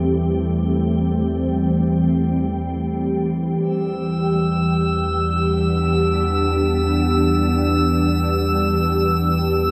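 Ambient excerpt in free time and E minor, spacious and melancholic, where an up-front, ethereal FM pad with ensemble chorus and phaser holds slow-blooming chords, moving from Am7/E to Em7 at 3.6 s, over a deep, round sine sub bass, while a calm texture of drifting glass-harmonic overtones with chorus enters high above at 4.0 s, the whole excerpt set in a vast, echoing space.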